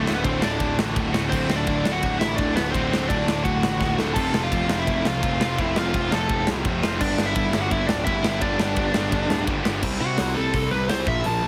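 A heavily compressed, radio-style mix with light reverb carries this rowdy, upbeat punk rock excerpt at 169 BPM, where a smooth, up-front overdriven lead guitar sings its melody over double-tracked crunchy and sludgy guitar riffs in the background, a growly fuzz-drenched picked bass, and a punchy big-room acoustic kit with bright cymbals. The band moves through D, F and G chords, with a drum fill at 3.8 seconds leading into the F, before a half-time C5 lead solo from 9.8 seconds, where the crunchy guitar drops out.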